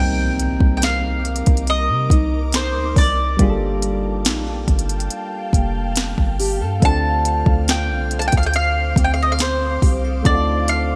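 A smooth, electronic R&B drum kit enters at 0.4 seconds with a soft kick, sharp snare and crisp hats, sitting up front in gated reverb over a deep, boomy 808-style bass in a slow, straight 70 BPM groove, for a sensual, moody piece of contemporary R&B in G minor cut from a longer track. An up-front mandolin carries the melody with a round, double-string picked tone, while gentle electric-piano-like synth keys with chorus and a dark, thumb-plucked nylon-string guitar playing arpeggios in the background, with lush chorus and digital delay, fill in the harmony through Cm9, Gm9 and Dm7. An ethereal, airy pad with ensemble chorus, phaser and built-in reverb fades in at 0.5 seconds, and a very quiet electronic impact lingers until 3.4 seconds, all within bright 1980s-style digital production and light reverb.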